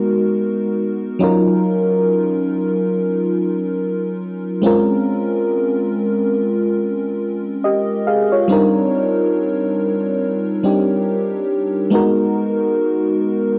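Cassette tape coloring and a digital ambience frame this moody, sensual R&B fragment, where a lush, dreamy FM electric piano with a soft pad layer plays alone and up front across its full 13.6 seconds, its mellow chorused tone striking fast and decaying through lightly swung minor-ninth chords from Abm9 through Ebm9, Bbm9 and Cm9.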